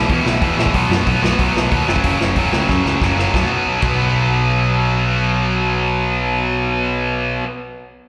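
Heard as a live gig through a venue's PA with small-room ambience and recital-hall reverb, this rowdy, rebellious punk rock excerpt charges along at 184 BPM in a straight 4/4, riding riffs on E5, B5 and F#5. Two up-front, bright electric guitars drive the riffs, one overdriven with slapback echo and the other tight with distortion, over a growling, overdriven picked bass. A raw, gritty garage drum kit with a punchy kick, medium-tuned snare, hi-hat and crash plays a fill at 2.7 seconds and drops out at 3.9 seconds, leaving the guitars and bass to carry on.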